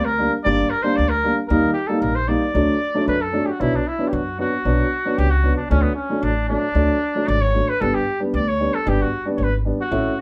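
A straight 2/4 pulse at 114 BPM carries this festive yet bittersweet klezmer fragment, where a classical-style cornet with vibrato sings the solo melody over a dark, boxy upright piano and a pizzicato upright bass with steel strings and a woody tone, shifting from D phrygian dominant into B minor at 3.6 s, all heard from further back in a small room with moderate reverb.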